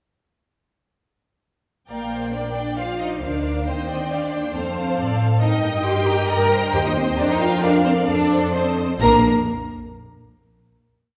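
At 1.9 s a string orchestra opens this graceful, cheerful classical-period movement together, with lush, softly attacked first violins carrying the tune doubled at the octave, second violins and violas weaving focused inner lines and sustained chords, a rich cello section singing the melody, and smooth double basses holding a sustained bass with passing notes, the whole ensemble bathed in a wet recital-hall reverb before it settles on a final chord at 9.0 s.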